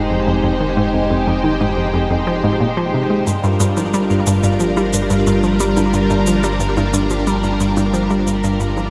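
A steady, straight 4/4 pulse at 90 BPM drives this expansive, cosmic slice of sequencer-driven space music, built on a hollow, bouncy square pluck riff soaked in chorus, phaser, tape echo and shimmer reverb, above a round, deep analog bass. A lush string machine ensemble sits up front with sustained chords washed in ensemble chorus and shimmer, moving from Fm7 to Gm7 at 3.3 seconds, where electronic cabasa and bongos with tape echo join. The whole mix floats in a huge, wet reverb until a fade-out begins at 6.8 seconds, cut from a longer piece.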